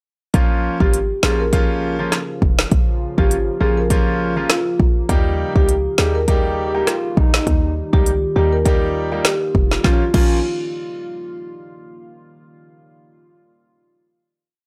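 Dancehall in Bb dorian at 101 BPM with a swung sixteenth feel, sultry and tough, built on an up-front afro-pop drum kit whose deep kick is answered by a woody snare over crisp hats, while a punchy, tight, short 808-style bass pulses syncopated low notes in the background. A bright concert grand piano plays syncopated chords moving from Bbm to Eb, a marimba with soft mallets carries a mellow, round, close-miked hook through analog delay, and a deep, moody ambient pad with chorus, built-in reverb and sidechain pumping sustains underneath from 1.2 seconds. At 6.3 seconds a breathy, flute-like synth lead with vibrato joins in the melody's rests, before the piece settles on a final Bbm chord at 9.8 seconds, all captured as a dry, gritty hardware recording with transformer saturation.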